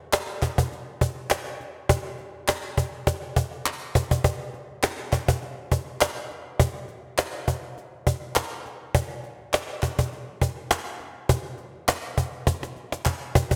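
A snappy acoustic cajon with snares leads this short pop fragment, played with soft hands and sitting up front, close and dry. Behind it, a group handclap adds a human, hollow texture that sounds as if it were caught in a small room, placed well beneath the cajon in level. The groove moves in 4/4 with a light swing on the sixteenths, giving the slick, bittersweet mood an easy lilt. The cajon breaks into fills at 3.7 seconds and again from 12.5 seconds to the close at 13.6 seconds. The whole mix is dreamy and soaked in a lush hall reverb, a setting that feels lifted from a longer piece.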